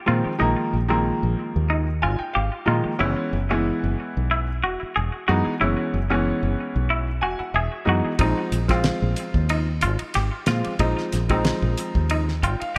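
Funky and intense, this electric jazz fusion excerpt moves at 92 BPM in 4/4 with a light swing on the sixteenths, cut from a longer piece. A clear concert grand piano with deep bass and short sustain carries the accompaniment throughout, adding fills at 1.7, 6.9 and 12.1 seconds, while a fingered electric bass, foam-muted and amped, sits up front beneath it. A clean, twangy electric guitar punctuates with bright picked stabs, touched by subtle chorus and digital delay. The harmony moves between Bb9sus4 and Gb9sus4 chords. At 8.2 seconds a damped 70s drum kit enters with hi-hat, kick, ride and a fat snare, its dry, dark sound and rolled-off top set close to the listener. Light reverb and small room ambience frame a bright 1980s-style digital production.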